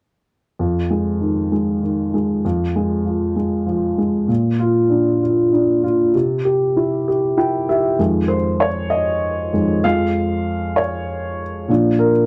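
A 6/8 pulse with a straight feel carries this short pop fragment, which moves at an unhurried pace and feels dramatic and aching. A baby grand piano is the only instrument, playing accompaniment that spans from low in the bass up into the upper register, set up front with an intimate, natural tone and audible action noise. Its chords move from Fm7 and Fm through Bb to C, and a brief fill at 7.1 s leads into a piano solo from 8.0 s, where the harmony shifts to Fm7, Db/F and Bb before the fragment breaks off at 12.3 s. A modest booth ambience surrounds the instrument, and the production is dark and warm.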